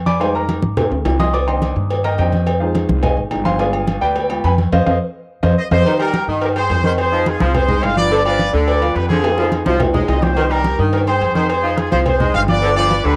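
A driving 4/4 salsa groove at 213 BPM in C minor, carried by woody, thumpy pizzicato upright bass up front, low-tuned congas played close and dry with soft hands, tight cowbell and bongos, and ringing agogo bells and timbales in the background, sets a fiery, passionate mood in this cut from a longer piece. A worn concert grand piano with deep bass and short sustain takes a solo through the opening section over Fm7, Cm7 and G7b9, with drum fills and a band accent leading into the next section. A clear, punchy horn section enters up front with the melody at 5.6 seconds, and a bright, vibrato-laden saxophone section adds a low second line with analog delay at 5.9 seconds, all within a wet booth ambience and the character of a home cassette recording.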